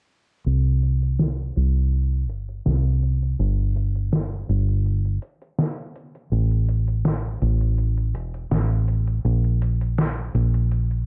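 From 0.5 s, a foam-muted fingered electric bass sits up front beside a detuned 8-bit drum machine playing hi-hat and a medium-tuned, tape-warmed snare re-recorded in a large room, carrying this melancholic, hazy vaporwave cut at 82 BPM in a straight 4/4, its dry, gritty sound coloured by transformer saturation, cassette tape, a low-pass filter and a filter sweep.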